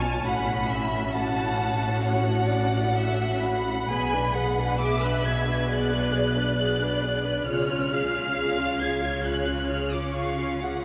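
Classical: an elegiac, melancholic slow romantic movement for string orchestra in F# minor at 67 BPM, played with rubato in 4/4 and cut from a longer piece, moving through F#m/A, G#dim/B and C# over about 10.8 seconds. An up-front, rich first violin section carries the melody high above a dark, woody, distant second violin line. Close, focused violas, smooth-topped cellos and soft-attacked double basses fill out the accompaniment and bass, all with vibrato, under a wet cathedral reverb.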